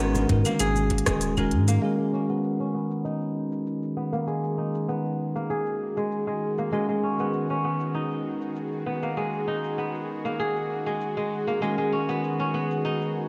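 Organic downtempo in G# minor at 98 BPM, this excerpt from a longer piece feels mystical and earthy, resting on a G#m7 chord. A bell-like tine electric piano carries the accompaniment throughout with a clean, direct tone, touched by subtle chorus, digital delay and sidechain pumping, while an up-front, fingerpicked kora rings out crisp arpeggios through a low-pass filter and delay. In the opening seconds a round sine sub bass and an overdriven, gritty electronic kick give a thumpy foundation, with very quiet, distant congas and bongos under hard hands, all of which fall away by 1.8 s. From there a filter sweep begins on the kora, and at 3.4 s a nasal, string-like drone enters with a slow attack, vibrato and a noise layer, its own sweep and sidechain pumping adding tension. The electronic kit keeps claves, crisp hi-hat, rim click, shaker and crash cymbal going under low-pass filtering, small room ambience and gated reverb, and a plate reverb and bright 1980s-style digital sheen colour the whole mix.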